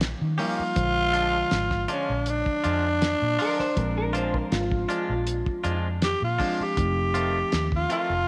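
A mellow, reedy electric piano, a round, punchy muted bass and a muffled, cloth-damped drum kit with a fat snare and tight kick open this soulful, gritty slice of straight-eighth soul blues, moving over Eb7, Bb7 and F7 chords. At 0.4 seconds a raspy, growling tenor saxophone takes the melody up front with light vibrato, while a bright, twangy clean electric guitar plays stabs. From 3.4 to 5.8 seconds a slightly broken-up guitar through a small old amp adds a second line, all in a moderate echo-chamber reverb.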